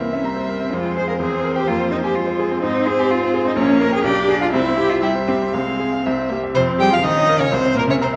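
Urgent and restless, this quick classical-period movement for piano quartet in F minor moves at 125 BPM in 2/4 with a rubato feel, as a rich, smooth violin carries the melody with vibrato over a focused, up-front cello second line, a bright baby grand piano with audible action noise and short sustain, and a clear viola accompaniment, all heard in the wet reverb of a recital hall across this 8.2-second cut from a longer piece.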